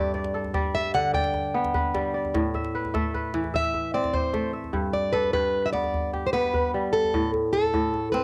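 A fingerpicked steel-string acoustic guitar, a kora and a djembe start together in this joyful, flowing excerpt of West African string and xylophone music, set in 12/8 at 100 BPM in G major and tuned slightly below standard pitch. The plugged-in guitar carries the melody up front with a warm, concert-style tone, featured as a solo through the first 4.7 seconds over a G to A minor progression. The kora sits just as close, its fingerpicked arpeggios ringing and crisp across a range from low G2 to E5. Lower in the mix, the djembe adds tight, cracking hand percussion with a close, hard-handed attack. At 4.7 seconds the music moves into a second section back on G, and at 7.1 seconds the chordal harmony falls away. The guitar and kora carry a cassette-tape texture, and a moderate small-room reverb gives the whole home recording an intimate feel.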